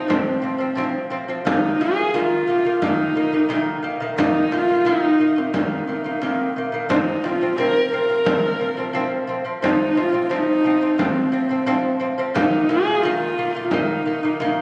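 Mongolian folk in a solemn, vast mood, this excerpt is led by a husky, woody horsehead fiddle carrying the melody up front with light vibrato and portamento, while a delicate, fingerpicked nylon-string lute with doubled courses plays arpeggios beneath it. A deep, distant frame drum enters at 0.1 seconds and sounds as if placed in a large room. The whole recording sits in a moderate scoring-stage reverb and was captured on a phone in the room.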